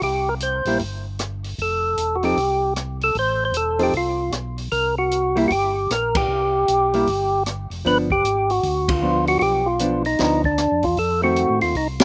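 A swung eighth-note feel in 4/4 drives this greasy, soulful soul jazz organ trio excerpt, where an up-front, fat, lightly overdriven tonewheel organ with third-harmonic percussion, slow rotary speaker and slapback echo carries the melody over a round, mellow organ bass with chorus vibrato, an acoustic drum kit with dark cymbals, a high-tuned snare and boomy kick, and a clean, fingered hollow-body electric guitar that accompanies from 0.7 seconds, as the band hits accents at 6.1 and 8.8 seconds over C7(no3), F, G7 and F7 chords in a dry outdoor sound.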